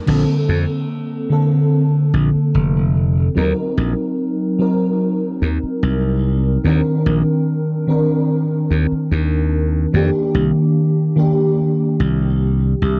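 Faded and nostalgic, this short vaporwave excerpt drifts at 73 BPM in a straight 4/4 feel, centered on B-flat major. A mellow FM electric piano carries the accompaniment up front, its soft, round tones touched by a noise layer and thickened with ensemble chorus and analog delay. Behind it, a warbling, lo-fi pad built from square and triangle waves holds sustained chords with a slow attack and long release, its grainy 12-bit sampler grit and built-in reverb keeping it in the background. A bright, growly slap bass enters at 0.1 seconds and sits punchy and direct near the front. The harmony moves through Bbmaj9, Ebm6, Cm9 and a rootless F9sus4, and the whole mix is soaked in a lush hall reverb with a cassette-tape haze that deepens its dreamy, washed-out character.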